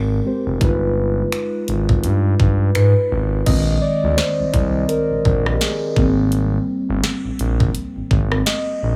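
Moody and late-night, this contemporary R&B excerpt moves at 84 BPM with a swung 16th-note feel, as muted, felt-like synth keys with a soft, warbling chorus tone and a smooth, gliding synth bass with portamento and vibrato carry chords from Abmaj9 through G7b9b13. A trap drum kit with a knocking kick, sharp snare, bright hats, finger snaps and rim clicks enters at 0.6 seconds. At 3.5 seconds the dark, intimate keys take a solo over Bb7sus4 and Abmaj7, all in a dry, close small-room sound.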